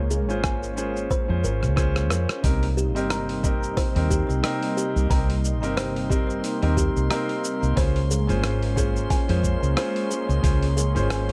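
Smooth and relaxed, this short sunset chillout clip rides a swung groove from a gritty, tape-warm sampler-style kit of hi-hat, rim click and shaker, anchored by a thumpy compressed electronic kick and a round, woody fretless bass sitting up front. A thick, warbling detuned pad with chorus holds sustained chords moving from Bbm9 to Cm7 and back, while an intimate baby grand piano with audible action noise and a thumb-plucked kalimba, both touched with digital delay, weave accompaniment and background arpeggios. A drum fill at 1.8 seconds leads into the second section, and from 2.8 seconds a faint glassy texture of drifting sine overtones floats high above in its own reverb, all within a dark, warm, dry production.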